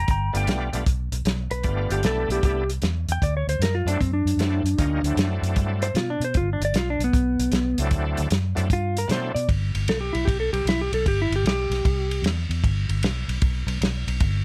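A swung shuffle at 153 BPM drives this rollicking, swaggering electric blues fragment, cut from a longer piece, with a dry, muffled soul drum kit and a round, punchy, foam-muted fingered bass sitting up front over chords moving from G9 to D9 and Gadd9. A dark, compressed lap steel played with fingerpicks carries the slide melody, while a shouting, lightly overdriven tonewheel organ with key click, chorus vibrato and slow rotary speaker fills in beneath until 9.3 seconds. At 9.5 seconds the music settles on G as the slide guitar takes a solo, all in light reverb.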